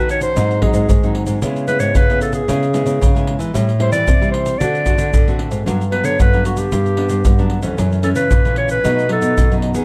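The recording has a dark, warm production with light reverb, and it is a short section cut from a longer samba and choro piece in a sunny, lively mood with a straight 4/4 feel. Up front, a clear clarinet carries the solo melody in a classical style, set in a plate reverb. Two fingerpicked nylon-string guitars with audible finger squeak and a classical tone share the harmony: one, full-bodied and warm, plays the accompaniment, while the other holds down the bass line. Percussion from tube shaker, pandeiro and a deep surdo enters at 0.1 seconds, sounding close and dry with hard hands and sitting prominently in the mix. The harmony moves from G#7 to C#m7, then through Am7, D7 and Gmaj7 before turning to F#m7 and B7.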